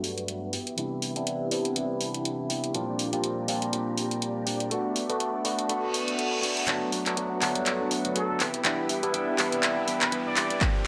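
Sunny and joyful, this short cut of filtered disco house moves at 122 BPM in 4/4 with a light swing on the sixteenths, cycling through Gmaj7, Cmaj7, Bb6 and Bm7 chords. A bright, barky tine electric piano sits up front through a combo amp with phaser, pumping and a low-pass filter, while a lush sawtooth string machine holds very quiet sustained chords with ensemble chorus beneath it. A clean, compressed electric guitar picks a riff in the background, and a tape-warm house kit of layered handclaps and pumping hi-hats drives the groove, all wrapped in an echo chamber reverb. A filter sweep runs through the opening, and a reverse cymbal and riser from 5.8 seconds lead into a build-up with a drum fill, where a dark, foam-muted fingered bass slips in at 6.7 seconds. Near the end, a brilliant trumpet section with light vibrato states a brief melody, and a punchy analog kick lands just before the cut.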